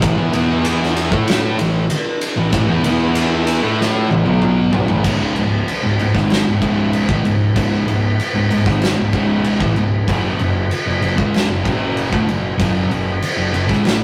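A sludgy, brooding stoner and doom metal passage, cut from a longer piece, opens with three thick fuzz guitars playing picked riffs in C# minor at 95 BPM, straight in 4/4 and tuned slightly low to A4 = 438 Hz. The lead guitar sits up front with a dark, distorted tone, while two very quiet guitars add a mellower layer, one of them double-tracked, and that double-tracked part drops out at 5.0 s. Beneath them a fingered electric bass growls in the background through overdrive, and an oversized low-tuned acoustic kit pounds up front with a boomy kick, dark cymbals, a medium-tuned snare and a pumping, gritty big-room sound. Power chords move between A5 and E5 in the opening stretch, a drum fill from 3.8 s leads into a second section that shifts to C#5, and F#5 arrives at 10.1 s. The whole take carries a rough rehearsal-room character with saturation and a moderate stone-room reverb.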